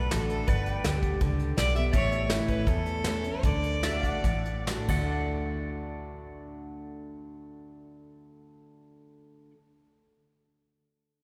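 A clear, focused fiddle carries the melody from the start over picked, full-bodied steel-string acoustic guitar, twangy pedal steel chords and a dark, round muted electric bass, with a soft brush drum kit keeping time in this sunny, down-home honky-tonk and classic country excerpt in straight 4/4. The chords move from G to A to D as the tempo slows between 1.9 and 5.1 seconds, and the fiddle stops at 4.7 seconds and the drums at 5.0 seconds, leaving guitar, pedal steel and bass to carry on. A long church reverb gives the whole room a spacious, echoing glow.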